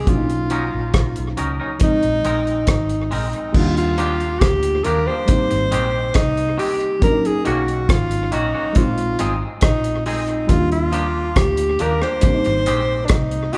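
A breathy tenor saxophone with light vibrato carries the melody up front in this tender, smooth lovers rock reggae excerpt at 69 BPM in Eb major, cut from a longer piece and moving through lush chords like Bmaj9, Bb9sus4, Ebmaj9 and Abmaj7. Beneath it, a dark FM electric piano with dub echo plays accompaniment, a round, punchy foam-muted fingered bass holds the low end, and a dry, up-front reggae drum kit with a tight kick, hi-hat, rim click and crash keeps a straight 4/4 feel. From 0.5 seconds a clean, compressed, twangy electric guitar adds picked stabs bathed in spring reverb, all captured as a band playing live together in one large studio room.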